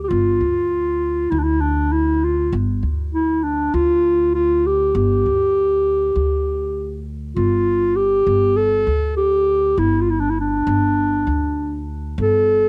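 A mellow, soft-attacked clarinet plays a classical-style solo melody with a cassette-tape tint, up front beside a woody, dark pizzicato upright bass, in this melancholic, hypnotic Turkish makam ensemble excerpt in G makam huseyni at 99 BPM in a straight 4/4, its home cassette recording set in a small room with light reverb and shifting to a new section at 7.4 seconds.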